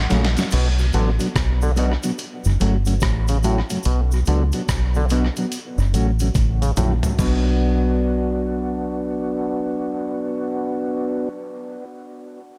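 This excerpt from a longer roots reggae piece rides a laid-back 72 BPM groove in 4/4 with a swung sixteenth-note feel, serious in mood and set in B minor, moving between F#m and Bm. A gritty, compressed sampler-style drum kit with a thumpy kick and medium-tuned snare opens with a fill, carries tape echo and a large-room character, and fills again before dropping out near 7.4 seconds, shortly followed by a distant cabasa in the background. Up front, a deep, round, punchy fingered electric bass with tube saturation anchors the low end throughout. A mellow tonewheel organ with chorus vibrato, slow rotary speaker and tape echo sits beside a dark, clean electric guitar, also touched with tape echo, while a stringy, percussive clav plays phased arpeggios until about 7.4 seconds. After the drums and clav fall away at about 7.4 seconds, the bass, organ and guitar carry on over the Bm chord, all set in light reverb.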